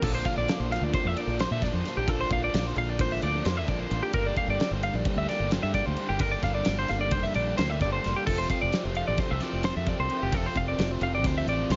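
A clean, compressed twelve-string electric guitar plays up-front arpeggios from the start of this bright, playful math rock and midwest emo excerpt, set at 262 BPM in 9/8. A faint twangy guitar accompanies it until 2.1 s, while an overdriven, double-tracked stack guitar riff, a punchy, foam-muted fingered bass and a loose, lo-fi drum kit carry on throughout, the kit sounding muffled and small-room with a fat snare and dark cymbals. Light reverb and a rolled-off top soften the mix as the chords move from Bbadd9 to Gm7 at 4.1 s and F6 at 8.3 s.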